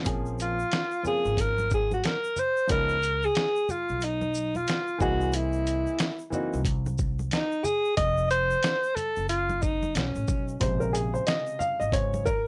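A breathy alto saxophone leads this mellow, cool jazz-hop excerpt, its jazz-style solo coloured by vibrato and scooped notes, sounding distant and roomy yet up front. Beneath it, a dark, woody upright piano accompanies in Bb minor at 91 BPM with a swung 4/4 feel. The piano pauses at 6.6 seconds, then returns for a short solo once the saxophone stops at 10.6 seconds. A pizzicato upright bass adds a growly low end, while a dusty, sampler-style soul drum kit sounds compressed and overdriven, with a thumpy kick, a medium-tuned snare, hi-hat and shaker. Bright tube shaker and congas sit close and dry in the background, and light reverb and a gritty cassette-tape character colour the recording.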